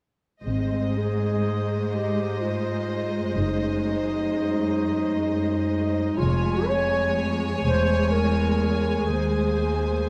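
A dark, distant clarinet with a soft attack stands out most, carrying a second line alongside a lush string ensemble in this tender, slow classical excerpt in Ab major, moving at 42 BPM in a rubato 6/8 with uneven beats. Two violin sections, one smooth and one focused, share the melody and a second line with vibrato, while a rich viola section holds an Ab3 accompaniment and an up-front cello section and a woody double bass section in the background anchor the bass. In light reverb, the harmony moves from Ab through Ab7/Gb, Db/F and Dbm/Fb before settling on Ab/Eb at 9.1 seconds.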